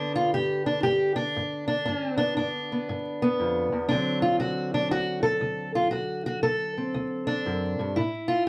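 Moderate studio ambience and a layer of vinyl crackle frame this short cut from a longer piece of acoustic country blues. A fingerpicked steel-string acoustic guitar plays solo and up front for the full 8.5 seconds, its parlour-sized tone dark and boxy. The tempo sits at 118 BPM in 4/4 with a swung eighth-note feel, giving the playing a soulful, swaggering gait in D mixolydian. The guitar spans from D2 up to A4, moving from G7 to D7 at 3.9 seconds before landing on an A5 at 8.0 seconds.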